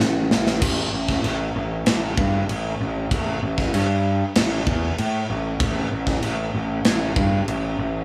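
Menacing and heavy, this hard rock excerpt at 96 BPM in a straight 4/4 opens with a drum fill from a gated 80s kit, whose punchy kick, medium-tuned snare and bright cymbals sit up front in a stone-like gated room until 7.6 s, while an overdriven, growly fuzz electric bass, picked up front between A1 and A2, carries the low end through 8.0 s, all captured as a band playing live in one small room with light reverb.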